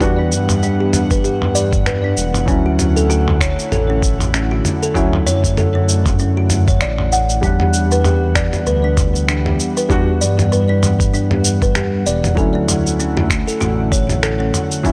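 Organic downtempo with a meditative, earthy mood, this fragment of a longer piece moves with a gentle sixteenth-note swing over chords that alternate between Em7 and Dmaj7. A felt-muted upright piano carries the accompaniment in a soft, intimate voice where the action noise stays audible, its notes touched by digital delay and a sidechain pumping that it shares with an airy, breathy pad holding sustained chords through a chorus shimmer. A woody, ringing kalimba spins arpeggios up front, close-miked and thumbnail-plucked, with a low-pass filter and its own digital delay. Underneath, a smooth sawtooth-and-triangle synth bass sits prominently with a fast attack and mellow sustain. The drums pair a thumpy electronic kick with a gritty, dusty soul sampler-style kit of finger snaps, shaker and toms, both compressed, tape-warm and re-recorded in a small room. All parts play together from 0.0 to 14.9 seconds, wrapped in light reverb.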